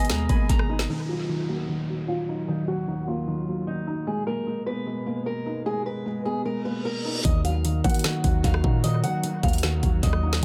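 An echo-heavy mix with light reverb opens this brooding, hard-hitting trap cut from a longer hip hop piece, set in Eb minor at 151 BPM with a half-time feel. A boxy, fingerpicked old ladder-braced acoustic guitar carries the melody through a low-pass filter and dub echo, over a felt-muted upright piano whose soft accompaniment comes with audible action noise. A warbly, tape-like pad holds sustained chords with chorus and its own reverb, while a breathy, bright concert flute flickers in the background for only the first half-second. The knocking kick, woody snare, rim click and metallic hats of the up-front trap kit drop out with the deep, boomy 808-style bass at 0.9 seconds, while a filter sweep, a downlifter and a reverse cymbal build tension. The drums and bass crash back in at 7.2 seconds as the harmony settles on Eb minor again.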